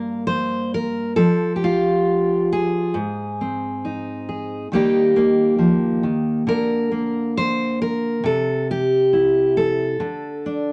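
A straight 4/4 pulse carries this brief, unhurried folk fragment, cut from a longer piece, where a lone fingerpicked steel-string dreadnought guitar plays throughout its 10.7 seconds. The full-bodied tone sits up front, with audible finger squeak and a moderate small-room reverb. The wistful, reflective harmony opens on Gm, pauses, then moves through Ab, Eb, Bb/D and C before settling on D5.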